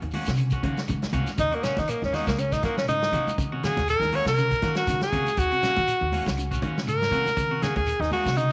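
A driving 4/4 groove at 120 BPM, with a light 16th-note swing, sets this intense afrobeat passage in Eb dorian, cut from a longer piece and resting on a single Ebm7 chord. A vintage drum kit plays hi-hat, a punchy kick and a medium-tuned snare with a natural studio-room sound, while a woody pizzicato upright bass on steel strings anchors the low end. Congas with a thick, high-tuned skin and soft hands sit in the background beside a grainy, compressed shekere, and very quiet, close and dry claves enter at 0.4 s. Two guitars stay in the back of the mix: a clean picked electric guitar plays arpeggios through a lush chorus, and a twangy guitar at the edge of break-up adds stabs with a warbly pitch drift. From 1.4 s a clear, punchy tenor saxophone takes the solo up front, singing in a pop style with light vibrato. A moderate spring reverb surrounds the whole band.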